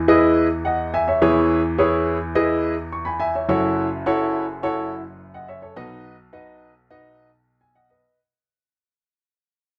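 A moderate studio reverb gives the sound a modest sense of space, with a decay of 0.8 seconds around the instrument. A lone upright piano sits up front, its tone woody and natural with a long sustain, and it plays the whole of this brief soul fragment from 0.0 to 8.2 seconds. The piece moves at 105 BPM in a straight 4/4, carrying a danceable, uplifting mood. The harmony runs from Emaj7 to C#m7/E, then on to F#m7 and finally B, with the piano reaching from deep F#1 up to C#6. Cut from a longer piece, the passage fades out across its full length.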